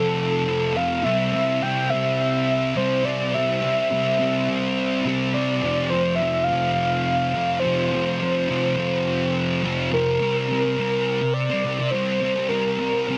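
At a steady 105 BPM in straight 4/4, this short rock excerpt, cut from a longer piece, settles into a wistful, dreamy mood in C mixolydian. A thick fuzz guitar carries the riff from start to finish, its double-tracked, picked tone sitting up front with a heavy distorted grit and a touch of analog chorus. Above it, a breathy, flute-like synth lead sings the melody between A4 and G5, its soft, warbling vintage voice blending triangle and sine waves with a noise layer, shaped by a fast attack, long sustain, vibrato, phaser, chorus and analog delay. The harmony moves from F to C, then shifts to F5 at 5.6 seconds before a new section arrives at 10.2 seconds on C5. Light reverb and digital ambience surround the two parts, and the dense, heavily limited modern master keeps the sound full and tightly packed.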